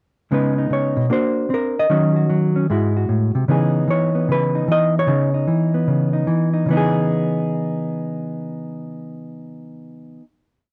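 Swinging at 151 BPM in 4/4, this short, late-night solo jazz piece in C# minor features a dark, clean electric hollow-body guitar played fingerstyle with an alternating thumb, up front and closely miked in a dry room, spinning motif-based song phrases through a chord sequence that settles into a final C#m9 held from 6.7 seconds to 9.9 seconds.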